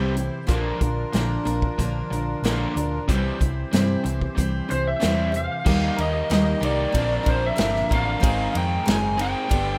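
A lead guitar through a small cranked amp, dark and overdriven, enters at 4.7 seconds to carry the melody high over this nostalgic, warm folk rock and heartland rock excerpt at 93 BPM. Beneath it, a bright picked steel-string acoustic guitar with audible finger squeak, a double-tracked crunchy overdriven guitar riff, a round hollow-body electric bass and a natural country drum kit with a punchy kick drive a straight 4/4 groove. A sweet, reedy accordion holds sustained chords in the background, moving from Bb and C to Eb at 5.7 seconds, then on to Bbadd9 and Abadd9, all in a rough home demo mix with light reverb and small room ambience.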